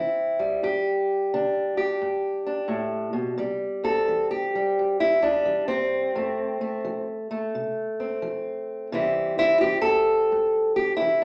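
Rollicking and gritty, this short excerpt of acoustic country blues in C major moves at 87 BPM in 4/4 with a swung eighth-note feel. A lone fingerpicked steel-string acoustic guitar, dark and woody with the boxy character of a parlour instrument on old strings, sits up front in a large, reverberant studio space. It settles on C and G for the opening 3.4 seconds, then takes a solo from 3.4 seconds onward over C, F and back to C, ranging from F2 to A4.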